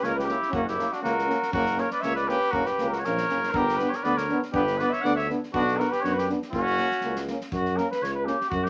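Balkan folk in the brass-band tradition, this restless, fiery fragment of a longer piece moves at 120 BPM in 2/4, with a lightly swung sixteenth-note feel in F# phrygian dominant, tuned slightly low to A4 = 438 Hz. A warm, distant cornet carries the melody up front, while a bright trumpet plays a second line just as prominently until it drops out at 7.2 seconds. A clear, close-miked trombone and a mellow French horn set further back supply accompaniment until 8.4 seconds, and a roomy tuba with light vibrato holds down the bass throughout. An acoustic drum kit played with bundle sticks adds a punchy kick and a medium-tuned snare at a low level in a small room. The harmony moves from F# through G and B minor back to F#, all wrapped in moderate studio reverb and a layer of vinyl crackle, with the brass phrased in a classical style.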